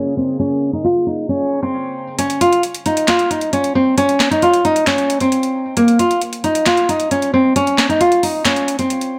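Heard through moderate room reverb, with a filter sweep over the opening 2.2 seconds, this dreamy, wistful half-time trap excerpt sets an up-front, full-bodied nylon-string guitar melody, fingerpicked with finger squeak, low-pass filtered and trailed by tape echo, against a bright, chorused sawtooth pad and a barely audible worn grand piano, before a booming analog drum machine with crisp snare, handclaps and metallic hi-hats enters at 2.2 seconds.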